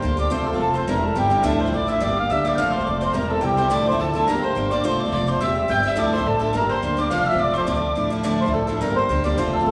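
A reedy, full-bodied accordion carries the melody of this wild, spirited Celtic reel, its dry tuning and tone chamber giving the tune a mellow warmth. It races along at 212 BPM in 4/4 with a slight swing, set in D minor and tuned a touch high. Above it, a breathy wooden whistle adds a second line with a crisp, chiffy attack and a slightly unsteady straight tone, heard close up until it drops out at 8.1 seconds. A round, double-strung mandolin plays another second line in the accordion's register from the background, while a boxy, picked archtop guitar sits up front with the harmony. A thumpy upright bass with gut strings gives the low end a dark, woody pulse. The chords cycle through F, C/E, Dmadd9 and Gm in a lively, hall-like space with a generous wet reverb, and the clip is cut from a longer piece.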